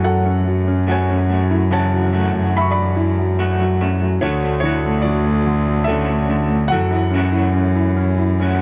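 An intimate, heartbroken acoustic folk-pop ballad in a gentle three-beat sway, this short excerpt is cut from a longer piece and moves from F#m7 to Dmaj7 and back. A felt-muted upright piano carries the melody with a soft, mellow tone and audible action noise, while a dark, slightly broken-up electric guitar through a small old amp plays tremolo-laden arpeggios. A bowed cello, played sul tasto with a pure, floating sound and a soft attack, holds the bass up front, all captured by close, detailed microphones with light reverb.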